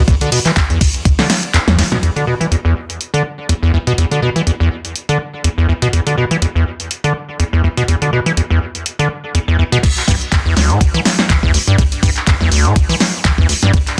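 A driving 4/4 groove at 123 BPM, swung 55% on the 16ths, anchors this gritty acid house passage in E minor, cut from a longer piece. A squelchy, resonant square-wave acid bass carries the riff between D2 and E3, its fast-attack, decaying notes shaped by a filter sweep and coloured with chorus, overdrive and tape echo. A punchy analog drum machine plays throughout with crash and ride cymbals, handclaps, hi-hat, snare and toms, and a short room sits on its snare, clap and hats. A thumpy, sampler-style electronic kick sits up front in the opening drop and returns at 9.8 s for the closing drop, with a drum fill at 1.7 s bridging into the middle section. The dense, heavily limited modern master and moderate small-room reverb keep the bass and drums close and in-your-face.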